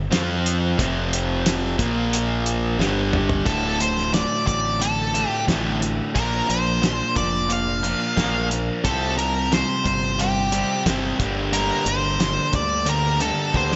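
A distorted electric guitar and an overdriven electric guitar open together on a riff in D minor, joined by a bright, punchy fingered bass and, from 0.1 seconds, a cloth-damped drum kit with a fat snare, tight kick and thuddy, rolled-off top. This is brooding, swaggering classic rock at 89 BPM in a straight 4/4, cut from a longer piece, with the riff moving through F5, Bb5 and G5 power chords before a drum fill at 2.8 seconds. At 3.5 seconds an octave-fuzz lead guitar steps up front with a dark, fuzzy melody in a high register, colored by digital delay, while the harmony shifts to Dm, Bb, Csus4 and Gm. The brighter rhythm guitar carries a slapback echo, and the overdriven one adds a picked, warm weight underneath. The whole mix sits in a lush hall reverb with a big arena sound and a dulled high end, and another drum fill arrives near the close at 13.5 seconds.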